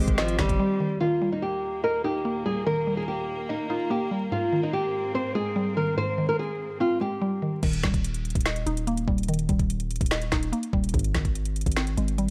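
Vinyl crackle and light reverb frame this dreamy, wistful hip hop and trap excerpt in Eb major, which moves at 145 BPM with a half-time feel. From the start, an up-front, fingerpicked nylon-string guitar melody sings over a round, mallet-like FM synth pluck and intimate, bowed sul tasto chamber strings, moving between Abmaj7 and Eb. In the brief opening they are joined by knocking kick, woody snare and metallic hats, a deep sine 808 and a soft, dark background pluck with chorus and delay, before a short silent gap. At 7.6 s the guitar and strings stop, and the tape-warm trap kit, with finger snaps and crash, returns alongside the long, decaying 808 beneath the mellow synth pluck until 12.3 s.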